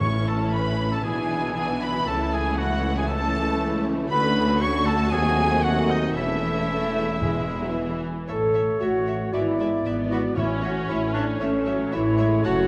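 A lush violin section carries the graceful, cheerful melody with expressive vibrato in this rubato classical fragment, joined by an airy flute, a cor anglais solo that drops out at 8.0 s, a second smooth-topped violin line, focused violas, rich cellos and clear, even double basses. Mellow French horns and trombones hold soft-attack sustained chords, while close, dry timpani mark the opening and return at 7.2 s. From 8.3 s a bright clarinet adds another line and a distant trumpet plays stabs, the orchestra sitting in a wet concert hall reverb.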